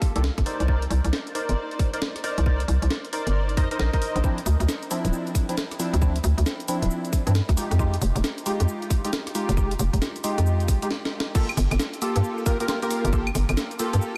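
Soulful and late-night, this two-step UK garage cut moves at 135 BPM in G phrygian with a swung 16th-note feel, a punchy, bouncy FM bass knocking up front while a tight, tape-warm electronic kick sits beside it. A gritty, compressed sampler-style kit adds a high-tuned snare, rim clicks, claves, shaker, hi-hat and crash, and percussive organ-like stabs with ring-modulated edges, ensemble chorus and tape echo trace minor ninth chords from Cm9 through Dm9 and Fm9. A drum fill and stop at 10.9 seconds lead into a drop on Gm9 at 11.3 seconds, all in light digital ambience.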